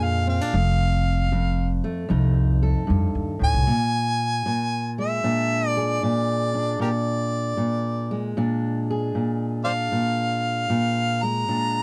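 A harmonica takes a jazz-tinged solo from the first moment, with light vibrato, tongue slaps and scooped notes over a smooth top, backed by a dark fingerpicked steel-string guitar and a woody, thumpy gut-string upright bass plucked pizzicato. This laid-back, gritty acoustic country blues excerpt swings at 77 BPM in Bb mixolydian, moving from Bb7 to F7 before returning to Bb7 at 3.7 seconds, where the bass drops out and the harmonica and guitar carry on together. All three parts sit up front in a dry, close 1970s-style studio sound.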